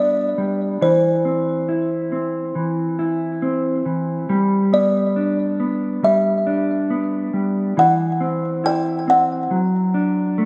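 Bathed in a long, wet plate reverb with a soft, rolled-off top end, this dreamy, blissful dream pop fragment pairs a woody, buzzing kalimba melody, thumbnail-plucked and hollow with a vintage tone and set in delay, against dark, clean, fingered arpeggios from an up-front electric guitar touched with subtle chorus and delay, both playing throughout the 10.5 seconds as the harmony drifts from G through C/E and Emadd9 to D.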